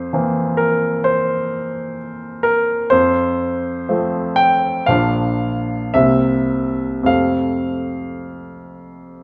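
A dreamy, tender romantic classical nocturne for solo grand piano in F major, drifting in a rubato 4/4 at around 50-66 BPM, with a warm, polished, up-front tone spanning Bb1 to G5, captured by close, detailed microphones in a moderate recital-hall reverb, as the harmony eases from C7 over F to a settled F at 2.9 seconds, then moves through Bb and C7 before returning to F at 7.1 seconds in this brief passage cut from a longer piece.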